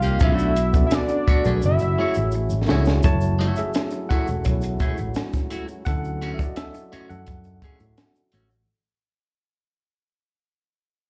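A fat, detuned analog lead with vibrato carries the melody over a worn, slightly out-of-tune tine electric piano, a mellow French horn section in the background, a twangy, phased electric guitar riff at the edge of break-up, a punchy fingered bass and a grainy tube shaker, with a dark, compact cocktail drum kit entering at 0.2 seconds in this silky, bittersweet 1970s-style soul heard live through a club PA, where the lead stops at 2.7 seconds and, after a drum fill, the electric piano takes a solo from 3.0 seconds as the music fades out.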